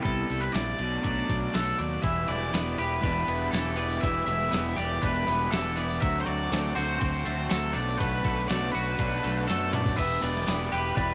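A straight 4/4 pulse from a crisp 8-bit drum machine with a thumpy kick and fat snare drives this bittersweet, moody indie rock excerpt, where an up-front, bright overdriven guitar carries the melody over a biting overdriven riff guitar, a twangy twelve-string electric with lush chorus in the background and a dark, round fuzz bass, while very quiet vintage sawtooth string-machine violas and a jingly tambourine join at 2.1 and 2.3 seconds before a drum fill at 9.5 seconds.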